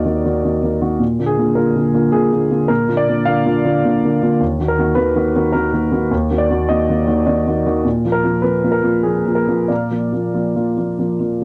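A dark, mellow baby grand piano plays alone with long sustain, up front in a dry, close 1970s-style studio sound with light reverb, carrying this wistful, melancholic neoclassical minimalist piece in a rubato 3/4 as it moves between Ebm and Bb across a range from Eb2 to F6 in this brief cut from a longer work.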